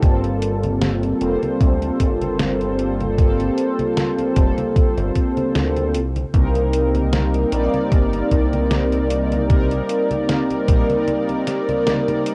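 This sounds like a rough home demo dubbed onto cassette tape, fairly dry, with a hazy, nostalgic vaporwave mood and a light swing. It is cut from a longer piece. Up front, a mellow synth brass carries the accompaniment in a round, dark, detuned sawtooth tone with chorus, vibrato, a filter sweep, analog chorus and tape echo. It moves from Gm11 to Cm7 at 5.9 seconds. Beneath it, a chorused synth bass gives a glossy, nasal pulse-wave sound with a plucky filter and a moving notch. A thumpy electronic kick and a detuned 8-bit drum machine, with congas, hi-hat, toms and a medium-tuned snare, have a tape-warmed, small-room character. The bass and kick drop out near 10.9 seconds, leaving the brass and drum machine, which closes with a short fill at 11.9 seconds.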